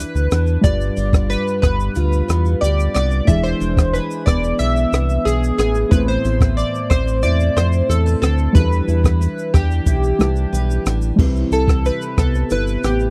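A dry, close 1970s-style studio sound frames this dreamy, hazy indie and bedroom pop excerpt at 91 BPM in C major, where glossy, chorused retro synth keys with tape echo carry the melody and take a solo from 11.2 s over a woody, slightly detuned upright piano in the background, a full-bodied picked steel-string acoustic guitar with lush chorus and warbly pitch drift, a deep, round analog bass up front, and a compact cocktail drum kit with a punchy kick, rim click and shaker.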